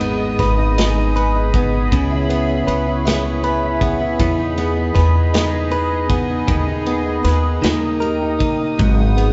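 Heard in a moderate studio room with a dark, rolled-off top end, this excerpt of a dramatic, melancholic six-eight pop ballad in G# minor moves at 52 BPM, the band playing live together across the full 9.3 seconds. A compressed, up-front clean electric guitar carries the accompaniment over a woody pizzicato upright bass and a punchy kick, medium-tuned snare and ride from a warm, mid-forward kit. Behind them, a fingerpicked dreadnought adds bright arpeggios with audible finger squeak, while a detuned sawtooth pad with chorus and a filter swell sustains resonant chords through G#m, C#m7, Emaj7 and D# before settling on G#m7.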